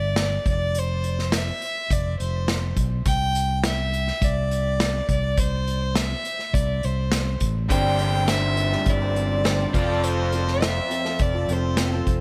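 A straight 4/4 pulse at 103 BPM from an up-front unplugged drum kit, with bundle sticks, a punchy kick and a medium-tuned snare, drives this nostalgic, hopeful folk rock and heartland rock excerpt in C major, where a fingered electric bass sits low and amped beneath a rich, smooth fiddle melody with light vibrato and analog delay. The chords move from F5 to C, and at 7.7 seconds, as the harmony shifts to Gsus4 and then F, a boxy picked acoustic archtop guitar with audible finger squeak and a double-tracked overdriven semi-hollow guitar riff join, all in a dry sound.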